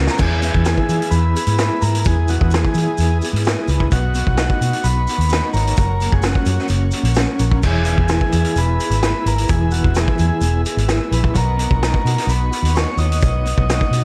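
A round, foam-muted electric bass sits up front in this hazy, trippy psychedelic rock excerpt, spanning E1 to E3 at a straight 129 BPM in 4/4, in E lydian. A vintage drum kit opens with a fill at 0.0 seconds, its saturated, gritty sound carrying a rolled-off top, dark cymbals and a mid-forward studio-room presence. A picked electric guitar through a small old amp plays a slightly broken-up riff treated with tremolo, while a buzzy combo organ carries the melody with light vibrato and analog delay. In the background, a smooth tonewheel organ holds sustained chords with chorus vibrato and a lush chorus, and very quiet, grainy maracas add a mellow shimmer. The harmony moves from E to Badd9 to F#, then returns to E and Badd9, all under a light reverb through to 14.0 seconds.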